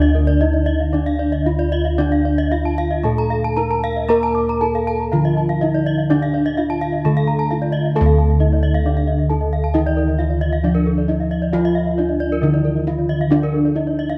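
A straight 4/4 pulse moving between 114 and 134 BPM drives this brilliant, hypnotic Balinese gamelan excerpt in D pelog, cut from a longer piece. Bronze metallophones carry the melody under wooden mallets whose paired tuning gives shimmering beats, and a bright lower accompaniment is struck with horn mallets. Two higher metallophones spin arpeggios. One is played with wooden mallets, its paired tuning shimmering and touched with tape echo. The other is struck with horn mallets, bright and shimmering, close-miked, dry and full. Meanwhile, round, beating bossed gongs sit up front as the bass. A moderate stage reverb surrounds the ringing ensemble, and the music shifts into a new section at 8.0 seconds.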